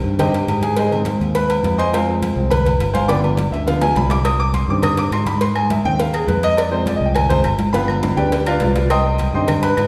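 A wet recital-hall reverb fills this fiery, passionate salsa excerpt at 207 BPM in C harmonic minor, cycling through Cm, Ab, Fm and G7 as a clear, open concert grand piano with deep bass takes the solo up front over a dark, punchy fingered electric bass. Bright congas sit in the background beside a round, low-tuned cowbell and ringing agogo bells and timbales, with drum fills at 3.5 and 8.0 seconds. Woody claves join quietly in the background at 4.3 seconds.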